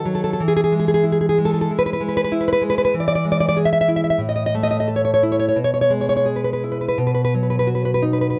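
A fingerpicked nylon-string guitar, up front with audible finger squeak, plays a sunny, tender romantic solo in a loose rubato, moving through E, A5, E/B and B chords in a small room across this 8.4-second excerpt from a longer piece, all heard through worn, warbling old cassette tape with wavering pitch drift.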